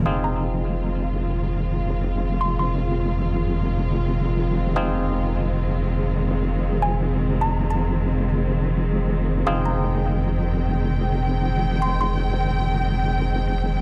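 A dark, lush string section opens this playful, swaggering glitch hop excerpt in F minor at 102 BPM with a swung 16th feel, joined at once by an up-front, saturated wobble bass holding F1, a woody wave-folded pluck melody with chorus and delay, stringy auto-wah clav stabs, and a very quiet glitchy kit of clicky hats and crash over a single Fm7 chord, all in light digital ambience.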